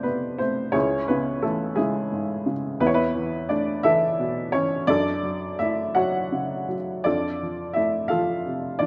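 A dark, worn upright piano with audible action noise and a slightly detuned, woody voice plays alone up front in this calm, peaceful excerpt of lyrical classical solo piano in a rubato 6/8, moving through chords from F to C#m, Esus4 and Dmaj7/F# before returning to F at 7.1 seconds, its short sustain softened by a moderate scoring-stage reverb.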